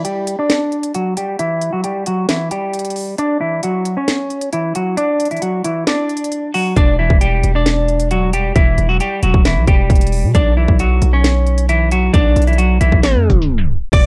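Dry and gritty with a cassette-tape grain, this brooding, melancholic hip hop and trap excerpt in B minor moves at 134 BPM with a half-time feel, cut from a longer piece. A dark, clean semi-hollow electric guitar carries the fingered melody with spring reverb and a filter sweep through the opening break. It sits over a trap kit of hard-clipped kick, sharp snare, crisp hats, handclaps and crash, its tone tape-warm. At 6.8 seconds a heavy, aggressive distorted 808-style bass enters up front, and a tape stop at 13.0 seconds brings the Em7 to Bmadd9 progression to a halt.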